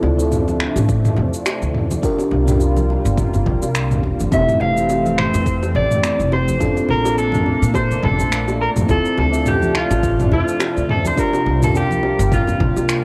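Blissful and relaxed, this swung sunset chillout excerpt sets a round, chorused FM electric piano and a thick, airy sawtooth unison pad with phaser over a woody, thumpy pizzicato upright bass, soft-handed bongos and congas in the background, and an overdriven, cassette-worn deep house kit of finger snaps, shaker and toms with a deep electronic kick, all in a light-reverb home-cassette sound, and at 4.3 seconds a dark, slightly broken-up picked electric guitar joins up front, carrying the melody through delay and shimmer reverb.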